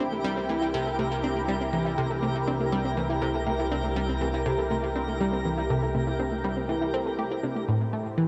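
A bright, nasal analog pluck sits up front, playing a riff between A2 and G4 with a fast attack and short decay, coloured by chorus, phaser and delay. Beneath it, a lush, detuned unison pad holds sustained chords through chorus and phaser, while a fat, saturated analog bass anchors a low C. A soft, dark pluck spins arpeggios in the background through chorus and delay until 7.6 s, and a twinkling granular texture adds sparkling octave-up shimmer high above with its own built-in reverb. This ambient, sequencer-driven space music in straight 4/4 feels hypnotic and expansive, its harmony resting on C before moving to Am7 at 7.7 s. The mix is bathed in a wet cathedral reverb that evokes a vast, echoing space, with a cassette tape character, in this fragment cut from a longer piece.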